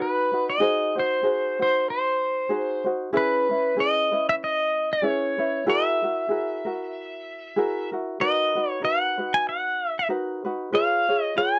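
From the first beat, a bright electric pedal steel guitar carries the melody over a mellow acoustic ukulele in this dreamy, languid Hawaiian piece, cut from a longer performance. The tempo sits at 95 BPM in 4/4 with a gentle swing on the eighth notes, and the music rests in B major. Played with fingerpicks and slide, the steel sounds clean and compressed, its volume swells adding a floating quality to the tune. The ukulele is thumb-plucked and light, picking out the harmony as it moves from B through G#7, C#m7, F#9 and Bmaj7 before reaching C#7 at 10.7 seconds. Both instruments stay up front for the full 11.6 seconds, captured in a dry, close 1970s-style studio sound touched with light reverb.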